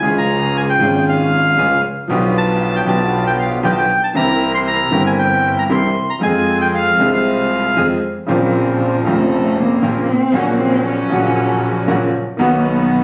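A rubato 4/4 pulse around 116 BPM carries this tense, melancholic tango in F harmonic minor, cut from a longer piece, where a dark, reedy bandoneon sings the up-front melody until 7.9 seconds while a second, brighter bandoneon adds stabs in the background. An intimate, boxy grand piano with audible action noise provides accompaniment over a clear, smooth double bass bowed with vibrato. At 8.3 seconds a distant, expressive cello takes a solo with vibrato and portamento, and the whole is captured on a phone in the room with moderate studio reverb.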